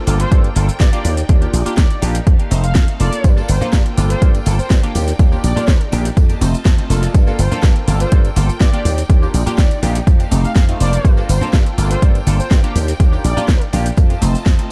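A funky polysynth comp and clear, distant symphonic strings open this excerpt of filtered disco house, joined within a fraction of a second by a growly, envelope-filtered slap bass, a house drum kit and an overdriven, punchy electronic kick that sits up front. At 123 BPM in a straight 4/4, the groove cycles through Gm7, Ebmaj7 and F7 in G minor, giving a sensual, funky mood. The bright sawtooth comp carries chorus, phaser and analog delay, while the bass gets a tube-saturated bite and the drum kit adds a cracking snare with metallic hats and shaker. Behind them, a fat, warbling analog synth brass melody with vibrato and chorus drifts in the background alongside the lush bowed strings, much of the arrangement breathing with sidechain pumping. Soft-handed tambourine and congas enter at 3.2 seconds, and the whole mix is bathed in an echo-heavy digital ambience.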